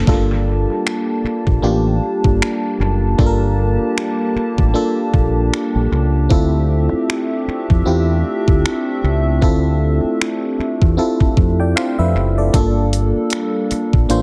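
A glassy, bell-like FM electric piano with a chorus sheen sits up front in this late-night, longing slice of contemporary R&B, its chords moving from Gm9 to Dm9 and back over a swung groove. Beneath it, a round, dark fingered dub bass carries the rhythm from the very start, joined at 0.1 s by a thumpy, tape-toned 8-bit drum machine of finger snaps, hi-hat and kick, soaked in analog delay. A hollow, flute-like soft pad holds sustained chords, and light reverb gives the whole mix an echo-heavy, nocturnal atmosphere.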